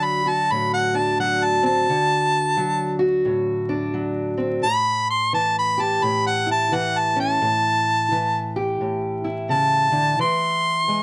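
Close, detailed microphones and a light reverb give this short cut of acoustic country blues an intimate feel, with vinyl crackle running beneath it. Two players sit up front at a relaxed 87 BPM in 4/4, the eighth notes carrying a loose swing that lends the soulful music a swaggering gait. A clear harmonica carries the melody as a solo across the full 11.0 seconds, its smooth top shaded with light vibrato and scooped notes in a jazz-inflected style, staying between F#5 and C6. Underneath, a fingerpicked steel-string parlour guitar supplies the accompaniment with a dark, boxy body, ranging from A2 to G4. The harmony starts on D, moves to A7(no3) at 4.7 seconds, and reaches E at 10.2 seconds as the fragment breaks off.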